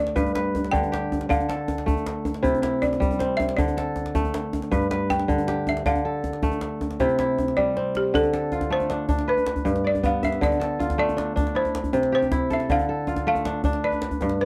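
A straight 12/8 pulse at 105 BPM in dotted quarters drives this hypnotic, flowing West African string and xylophone excerpt in D dorian, cycling through G, Dm and C. A fingerpicked acoustic kora sits up front with ringing, crisp arpeggios, while a deep djembe with metal rattles plays the percussion. The woody, buzzing balafon, struck with hard rubber mallets for a dark, smooth tone, solos through the first 8.1 seconds until a drum fill at 7.6 seconds leads into the second section, all captured in a dry, close 1970s-style studio sound.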